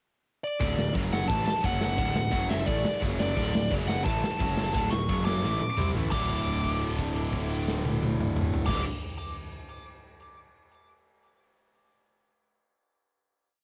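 A smooth, dark overdriven lead guitar with tape echo opens at 0.4 seconds on a motif-based melody, then a growly fuzz bass doubling the power-chord riff, two bright guitars (one raw and overdriven, one tight and distorted), and a punchy, up-front big rock drum kit with a two-step groove crash in at 0.6 seconds for an upbeat, rowdy 174 BPM punk rock piece in D major, home-recorded on cassette, where a drum fill leads into a final chord held from 6.1 seconds.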